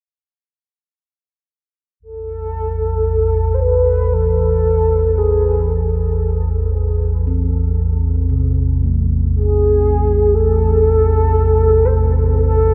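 In a slow, straight 4/4 pulse, this dark ambient drone piece, cut from a longer work, feels unsettling and ominous from its first moments. A mellow, horn-like synth lead enters at 2.0 seconds, carrying a round, vintage-toned melody up front with lush chorus, vibrato, a filter sweep and delay. Just after, at 2.3 seconds, a deep rumbling drone settles in low beneath it, its detuned, warbling tone also up front, swimming in built-in reverb and lush chorus. A bronze singing bowl fades in, with its arpeggios sounding from 4.1 seconds: metallic and ringing with slow beating, softly struck with a felt mallet, and trailed by delay. The whole passage rests on a single A minor chord, held in a huge ambient reverb that gives the meditative, dark atmosphere a cavernous depth.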